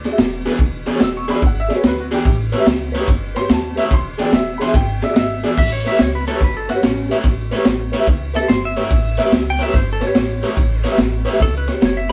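A clear, slightly detuned upright piano with audible action noise opens this soulful, gritty electric blues shuffle at 144 BPM with a solo over woody pizzicato upright bass and a punchy, saturated breakbeat kit with dark cymbals, while a mellow, flute-like tonewheel organ on slow rotary speaker and a crunchy overdriven guitar riff join, until a bright, twangy lap steel takes over the lead with a slide solo at 5.6 seconds, the band playing live in a small room.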